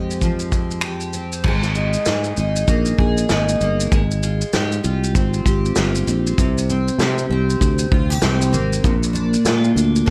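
A light reverb gives this short acoustic pop clip, cut from a longer piece, a close, intimate sound with every part sitting up front. The mood is easy-going and sunny, moving in 4/4 with a gentle swing on the sixteenths. A full-bodied, jumbo steel-string acoustic guitar opens at 0.0 seconds, picked and double-tracked for a thick accompaniment. A loose indie drum kit joins at 0.1 seconds, recorded in a studio room with a medium-tuned snare, a punchy kick, a rolled-off top end, and touches of crash cymbal, finger snaps and shaker. At 1.4 seconds a sustaining fretless electric bass comes in, growly and warm, taken direct and through an amp. The harmony drifts from Fmadd9 through Absus2 and Fmadd9/Ab to C5 and Bb, keeping the colours open and unresolved.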